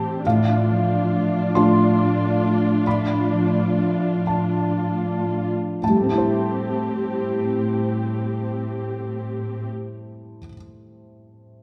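A cinematic, emotional film score fragment in a rubato 6/8, bittersweet and full of longing, where a soft, felt-muted upright piano with audible action noise sits up front beside a lush viola section singing with vibrato and portamento, ringing fingerpicked concert harp arpeggios and a smooth, rich cello section holding the bass, the music slowing through its opening section before the strings stop at 9.7 seconds, the harp at 10.5 and the piano at 11.6, all set in the wet glow of a recital hall.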